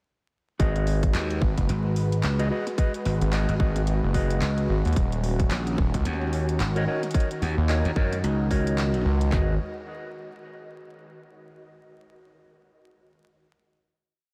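Playful, funky glitch hop in G# minor at 110 BPM with a 16th-note swing, built as a short drop from 0.6 seconds: two layered, overdriven electronic kits deliver a tight broken kick, floor tom and claps alongside a cracking snare and bright hats on an edited, swung beat, while an aggressive, saturated square-and-sawtooth synth bass with oscillator sync and a moving notch trades chopped phrases with a growly, punchy overdriven slap bass. Over them, dark, clean fingered electric guitar stabs play syncopated close-voiced chords, and a smooth, detuned sawtooth pad warbles with chorus and sampler grit, both pumping to the sidechain, as G#m7 shifts to D#m7 at 5.0 seconds and returns for a final chord at 9.3 seconds, all wrapped in vinyl crackle and light digital reverb.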